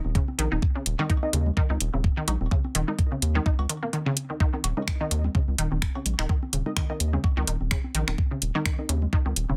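Sparse and hypnotic, this minimal techno excerpt moves at 127 BPM in 4/4 with a light swing on the sixteenths, sitting in a dry space with little reverb. A rubbery, hollow square-wave bass anchors the low end from the start, dark and bouncy with a filter pluck, fast attack and sidechain pumping. An overdriven electronic kick knocks up front from 0.2 seconds, joined by a garage kit of finger snaps and metallic hi-hats, while tape-colored congas and cowbell sit in the background through a delay. A squelchy, resonant blip pluck carries the riff, bright and juicy with detuned sawtooth character, dressed in chorus, cassette tape grit, delay and its own pumping. From 1.0 seconds a muted, deep dub chord stab drifts in higher up, its evolving tone and short decay softened by phaser, lush chorus and delay into a mellow haze.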